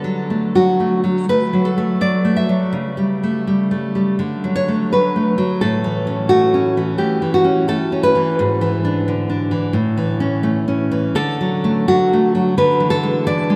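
Warm and nostalgic, this romantic piece for solo classical guitar unfolds in 4/4 with uneven, rubato timing that lets phrases breathe and linger. The nylon-string guitar, fingerpicked and placed up front, carries the whole excerpt alone from 0.0 to 13.6 seconds, spanning a range from G#2 up to E5. Its acoustic tone is warm and classical, and a finger squeak on the strings adds a touch of human presence. The harmony moves gently between D, A and their related chords, passing through an E7/G# around 8.4 seconds, returning to D at 11.2 seconds and closing on E7/D. A long cathedral reverb surrounds the guitar, suspending each note in a vast, echoing space. The passage is cut from a longer piece, so it feels like a glimpse into a larger reverie.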